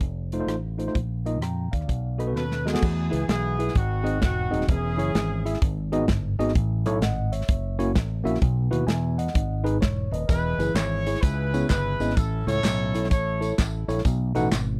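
A clear horn section carries the melody of this soulful, uplifting uptempo gospel excerpt, its pop-style ensemble playing marked by vibrato as it enters at 2.4 seconds and returns at 10.3 seconds. The tune moves at 128 BPM in 4/4 with a swung eighth-note feel in E major, and the chords travel through changes such as E, G#7, C#m/E, A and F#7. Underneath, a tine electric piano sits up front with a clean tone heard through its built-in speakers, while a fingered electric bass adds a dark, round, punchy low end. A natural country drum kit, acoustic and polished in an airy studio room, drives the groove with a punchy kick, medium-tuned snare, hi-hat, rim clicks and crash cymbal, and a short drum fill leads into the main section. A mellow electric guitar with spring reverb offers a brief, compressed second line in the background at 2.2 seconds, and tambourine and handclaps join the horns' return with a vintage, band-limited character. 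The dry, close sound recalls a 1970s studio.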